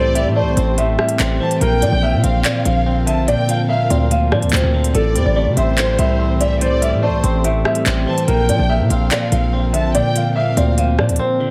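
Vinyl crackle and light digital reverb frame this cold, dark half-time drill excerpt, where a mellow, boxy grand piano with audible action noise carries the melody over a twangy, scooped clean electric guitar, while a distant bowed violin section adds an expressive second line with vibrato and portamento, an ethereal detuned pad with ensemble chorus sits in the background, and a punchy, saturated 808 bass pushes up front beside an electronic drum kit of crisp hi-hats, handclaps and rim clicks that enters at 0.2 seconds before both drop out for a brief break at 11.2 seconds.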